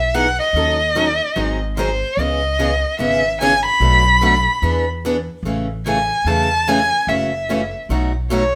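A single bowed violin leads this charming jazz manouche cut, singing an expressive melody with vibrato, portamento and a soft attack, placed up front. Behind it, a woody, thumpy upright bass with gut strings plucks the bass line while a bright, boxy picked steel-string acoustic guitar, also up front, supplies parlour-style accompaniment with audible finger squeak. The tune swings at 147 BPM in E major, moving from Emaj7 through C#m7 and Amaj7 to B7 in light reverb before breaking off at 8.6 seconds.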